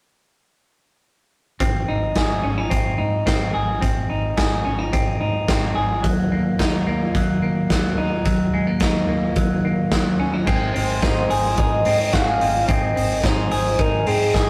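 A clean, compressed semi-hollow electric guitar plays up-front picked arpeggios over gritty, saturated garage drums with a punchy kick and a dark, round, foam-muted fingered bass in this youthful, nostalgic jangly indie pop excerpt at 108 BPM in Ab mixolydian, moving from Ab to Ebm and back before a twangy guitar enters in the background at 10.5 seconds and a velvety, chorused synth lead with vibrato carries the melody from 10.7 seconds, captured as a rough rehearsal-room recording with moderate stone-room reverb.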